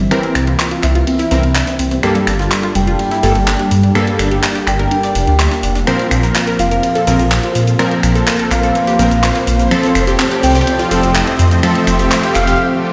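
A spacious, stone-walled digital reverb bathes this uplifting, expansive progressive house build-up, where a deep, rumbling detuned saw bass sits up front beneath a thick, phased unison pad, bright unison pluck arpeggios, punchy supersaw stabs with tape echo, a round, mellow octave-layered lead melody with chorus and vibrato, a layered house kit of snaps, claps, hi-hat and shaker, a very quiet brushed acoustic kit, and a faint riser and reverse cymbal that enters at 4.6 seconds, while filter sweeps run across the pluck, pad and lead over chords moving from C7 to F before a brief break at 12.6 seconds.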